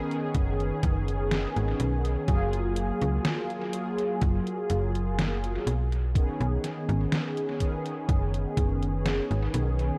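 A cassette-tape haze with light reverb, digital ambience and heavy echo wraps this nostalgic, dreamy vaporwave excerpt at a slow 62 BPM in straight 4/4. Up front, a round, dark synth brass carries the accompaniment through B69, F#maj9 and back to B69, its detuned sawtooth tone colored by analog chorus, vibrato, a filter sweep and dub echo, while a snappy FM bass with a metallic attack is also placed up front. Beneath them, a thumpy, overdriven electronic kick and a detuned 8-bit drum machine supplying hi-hat and medium-tuned snare, overdriven and dub-echoed, sound as if re-recorded in a small room.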